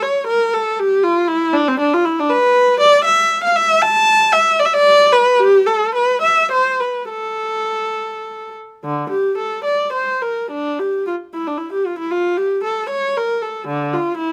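In a rubato 6/8 at 66-80 BPM counted in dotted quarters, this grave, introspective baroque-style suite movement, cut from a longer piece, gives a single bowed, up-front viola a warm, expressive voice with vibrato and portamento, ranging from D3 to A5 in A minor before turning to D minor at 8.8 s, captured by close, detailed microphones in light reverb and tuned to A4 = 439 Hz.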